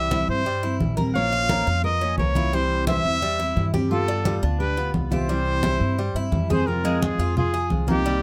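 A breathy, whispered trumpet leads up front with light vibrato, soft attacks and scooped notes, carrying an intimate, pop-style melody over a danceable Cuban son and guajira groove cut from a longer piece. A bright fingerpicked dreadnought steel-string guitar with audible finger squeak, metallic double-strung tres arpeggios, thumpy pizzicato upright bass with a woody, dark tone, and low-tuned, thick-skinned congas fill out the band, while a full-bodied nylon-string guitar enters at 1.2 s as a second line in the background. The close, detailed, nearly dry sound keeps every part crisp and warm, and a new section arrives at 6.7 s.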